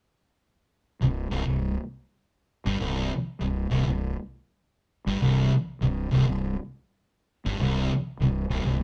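A live-room recording with a moderate studio reverb catches a heavy, brooding metal piece at 100 BPM in straight 4/4, tuned slightly flat to A4 = 437 Hz and cut from a longer work. From 1.0 s to 8.8 s, two thick, dark fuzz guitars pick a low riff on a C5 chord, one up front and the other sitting in the background. Beneath them, a fingered electric bass plays up front with a warm, growly, overdriven fuzz tone.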